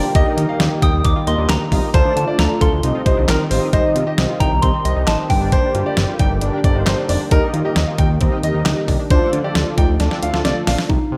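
A moderate recital-hall reverb wraps this cool, nocturnal synth-pop excerpt, with a detuned 8-bit drum machine sitting up front, its thumpy kick, medium-tuned snare, hi-hat and handclaps sounding sampler-style and re-recorded in a large room, beneath a fat, saturated analog sawtooth bass. A soft, pure FM synth bell carries the melody through chorus, phaser and digital delay, while a clear concert grand piano adds a smooth second line with delay. In the background, a round, dark synth brass with vibrato accompanies, a lush, nasal unison pluck plays delayed arpeggios, and an evolving, warbling resonant pad with a slow attack and filter swell sustains the chords, before a drum fill from 10.0 seconds closes the passage.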